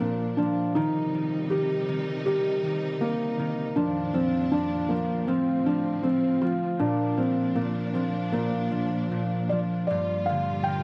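Innocent and tender, this rubato children's lullaby excerpt sets a felt-muted upright piano up front carrying the melody with a dark, intimate tone and audible action noise, over bright, ringing fingerpicked concert harp accompaniment and a distant, lush bowed string section holding sustained chords with vibrato, all captured as a dry, close 1970s-style studio recording in small room ambience.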